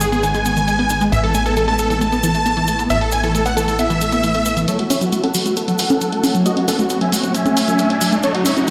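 A straight 4/4 pulse at 135 BPM drives this emotional, euphoric uplifting trance excerpt in F# dorian, with electronic hi-hat and congas re-recorded in a large room, a grainy cabasa in the background, and a punchy, funky analog bass under a detuned unison pluck playing arpeggios and a shimmering, ethereal pad holding sustained chords. A huge, bright supersaw lead carries the melody up front with digital delay, while a clear, boxy concert grand piano adds a second line in the background until 4.6 s. From 4.7 s a build-up begins with a filter sweep on the pluck, and an electronic riser joins at 5.5 s, all washed in a long ambient reverb and the echo of a bare stone room.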